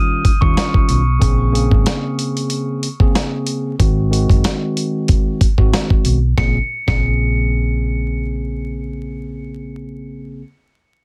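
A bell-like glockenspiel, struck with rubber mallets, rings out briefly over a mellow tine electric piano that carries a cassette-tape softness and plays jazzy ninth and seventh chords. At 0.2 seconds a gritty, sampler-style soul drum kit enters up front, its thumpy kick, medium-tuned snare and hi-hat compressed and swung in a boom-bap groove. A dark, round hollow-body electric bass follows almost at once, its fingered line punchy and amped in the low register. The mood is reflective yet tough, and the dry, dense, heavily limited mix is dusted with vinyl crackle. At 6.4 seconds the glockenspiel returns with its tape-echoed melody high above the electric piano, and the drums drop out at 7.0 seconds, leaving glockenspiel, bass and keys to close this short cut from a longer piece.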